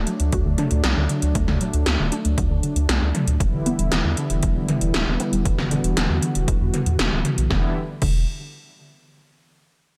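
Moody and nocturnal, this synthwave excerpt sets a brassy, detuned sawtooth pad on sustained chords, with sidechain pumping and 12-bit sampler grit, over a deep, round bass and a warbling, lo-fi pluck whose arpeggios sit in the background under ensemble chorus and digital delay. Filter sweeps move through both the pad and the pluck until 7.5 seconds, as the harmony shifts from D to Em7 and then lands on a bare E7 chord. Up-front electronic drums bring metallic hats, crash, and a gated snare and toms, and a punchy, tape-toned kick joins at 0.3 seconds.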